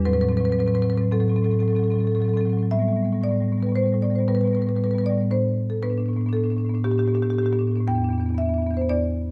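Moving in a rubato 5/4 at 116 BPM, this hypnotic, flowing cut from a contemporary classical piece for solo marimba in A minor features smooth, dark padauk bars struck with medium mallets, sitting up front across a range from E2 to G5 as the harmony drifts from Am6 through Asus2 at 2.7 seconds and Am11 to Em7 at 7.9 seconds, framed by a moderate stone room reverb.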